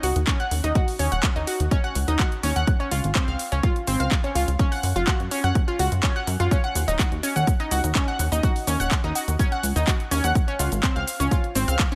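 This short, emotional and bittersweet progressive house excerpt opens with an analog pluck playing arpeggios, a plucky analog bass and a house drum kit of cabasa, handclaps and bright hi-hats, with a punchy electronic kick joining at 0.3 s. The piece moves at 125 BPM in a straight 4/4 and sits in Eb dorian, tuned slightly sharp to A4 = 441 Hz, cycling through Ebm7, Dbmaj7 and Gb5 before returning to Ebm7. The up-front pluck is round and vintage, its detuned sawtooth, square and triangle waves warbling under chorus, tape echo and sidechain pumping, with a filter sweep, as it ranges from C4 to Gb6. The bass is also up front, funky and mellow, a detuned, wave-folded blend of sawtooth, pulse, sine and triangle with a fast-attack filter pluck and sidechain pumping of its own. The kit and kick are layered and overdriven in a small room reverb, and the mix sits in light digital ambience.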